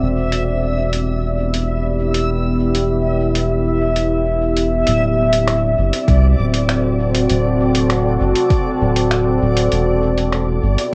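Meditative and hazy, this ambient dub excerpt at 99 BPM in 4/4 sets a dark, detuned pad with chorus and reverb over a round, tube-saturated sub bass, while a reversed, granular texture swells high above, muffled pitched-down finger snaps and hi-hat from a tape-softened sampler kit tick along, and an overdriven electronic kick thumps in only from 6.1 to 8.6 seconds, all moving from Em7 to D7 and back in a lightly reverberant home cassette recording.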